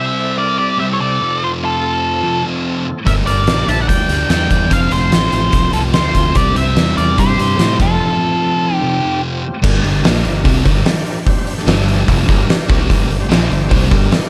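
A distorted octave-fuzz lead guitar carries the melody up front in this brooding, smoky blues rock power trio and southern rock excerpt at 146 BPM in 4/4. A double-tracked, thick fuzz guitar riff sits beneath it, with a bright, biting lead guitar line and a full tonewheel organ with key click and fast rotary speaker holding sustained chords in the background. At 3.1 seconds a growly fuzz fingered bass and an oversized low-tuned drum kit enter, the kit punchy and saturated with a fat snare and dark cymbals; the leads drop out at 9.2 seconds during a break that runs from 8.0 to 9.6 seconds, and the song settles on G minor from 9.6 seconds under light reverb.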